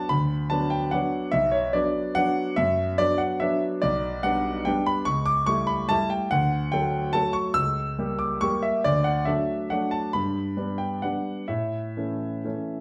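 A classical piano waltz in 3/4, sparkling and playful, moving with a rubato feel between 124 and 152 BPM and turning from B minor toward D major at 3.8 seconds. A solo grand piano, clear and up front with long sustain, spans B1 to E6 across this short passage, with harmonies passing through a C#dim7 before settling on G and A. A generous large-studio reverb wraps the piano, which is heard from further back in the room.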